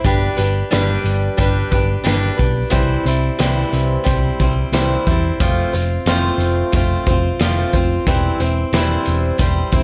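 This folk rock and heartland rock excerpt rolls along at 90 BPM in a straight 4/4, carrying an open-road, jangly mood in C major. A bright, boxy acoustic guitar, picked in a swing style and sitting up front with plate reverb, provides the accompaniment across the full 9.8 seconds. Beneath it, a dark, round hollow-body short-scale electric bass plays with a punchy, amped tone, moving between E1 and E2. A loose indie drum kit of hi-hat, kick and snare fills out the groove with a fat snare and a boomy kick in a pumping studio room. The chords move from G to C, then F, and land on C/E at 8.1 seconds, all within light overall reverb.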